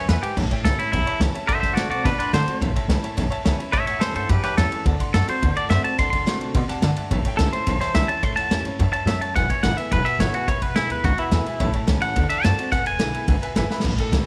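A light studio reverb gives this rollicking, retro rockabilly excerpt a lively room feel, with a clean, compressed, twangy electric guitar up front carrying the melody through tape echo at a brisk 214 BPM in straight 4/4. Thumpy pizzicato upright bass on gut strings and a punchy vintage drum kit with a pumping small-room sound drive the A7, D7 and E7 changes. A bright dreadnought acoustic guitar sits in the background beside a clear, woody upright piano that plays a short fill at 6.5 seconds, before a drum fill arrives at 13.7 seconds.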